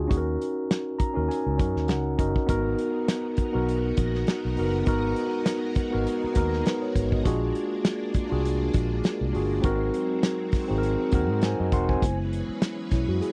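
A mellow tine electric piano sits up front in this lush 1970s-style soul excerpt at 101 BPM, playing clean accompaniment through its built-in speakers and adding short fills before taking a brief solo at 12.0 seconds. Beneath it, a dark, round, foam-muted fingered electric bass gives a punchy low end, while an acoustic drum kit with a tight kick, a medium-tuned snare and hi-hat carries a gentle 16th-note swing from a small room, its top rolled off. At 2.5 seconds a string machine voicing violins enters quietly with slow-attack sustained chords, its sawtooth tone shimmering under an ensemble chorus. The harmony moves from D#m7 through G#m7, A#7b13 and G#7 before settling on F#9sus4, giving the groove a bittersweet, smooth mood. The sound is dry and close, a 1970s-style studio recording with little reverb and a vintage glow.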